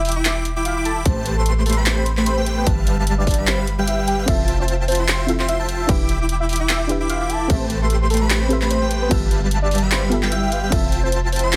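Dreamy and emotional, this future bass passage moves at 149 BPM in 4/4 with a half-time feel and a light swing on the sixteenths, set in A minor and slightly sharp of standard tuning. A velvety synth lead carries the melody between A4 and A5, coloured by chorus, tremolo and tape echo, while an airy, bright lead spins arpeggios high above and a huge, detuned supersaw riff adds thick, compressed weight. Underneath, a deep, boomy 808-style bass sits up front, and every one of these synth parts breathes with sidechain pumping. An overdriven dubstep kit of crash, handclaps and hi-hat runs throughout, joined by a punchy, overdriven electronic kick from 1.1 to 10.8 seconds. At 4.3 seconds a soft, round pluck with a dark filtered edge enters as accompaniment. The chords cycle through Em7, Am9, G13 and Fmaj7 under light reverb and digital ambience, and the passage is cut from a longer piece.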